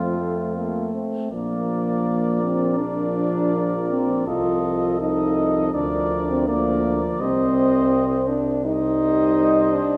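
An up-front, warm French horn accompanies this triumphant classical brass quintet passage, cut from a longer piece and played with rubato and light vibrato, as a close-miked trumpet carries the melody over a mellow, soft-attacked flugelhorn second line set distant in the room, a clear trombone in the background and a bright, vintage-toned bass trombone underneath, the quintet bathed in a wet recital hall reverb heard from further back.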